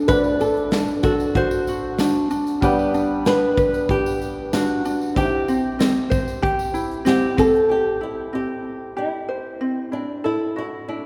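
A fingerpicked flamenco guitar carries the melody up front, finger squeaks and all, in this carefree, heartfelt acoustic pop excerpt at 94 BPM in 4/4, with a light fingerpicked ukulele beside it, a woody upright piano in the background, a studio drum kit with a punchy kick, medium-tuned snare and shaker, and a jingly, close, dry tambourine, all set in a church's long, wet reverb as the chords move from D7 to Gmaj7 to C before the piano and drums drop out at 7.7 s, leaving guitar and ukulele to land on Dadd9 at 10.3 s.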